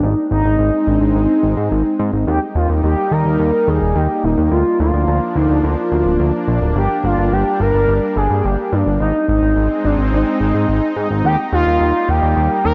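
A fat, wave-folded analog bass, a lush detuned unison pad and a smooth, expressive lead all sound together from the first moment of this nocturnal, nostalgic synthwave piece, which is cut from a longer work. The lead carries the melody up front, using a mellow blend of sawtooth and triangle tones with a soft attack, vibrato and gliding portamento, framed by analog chorus and digital delay. Beneath it, the pad holds sustained sawtooth chords that bloom through a slow attack and linger on a long release, thickened by its own chorus. The bass sits prominently in the low end with a quick attack and a filter sweep. Light reverb and a digital ambience surround the mix, whose top end stops at 7.5 kHz, and all three parts play through to 12.7 seconds.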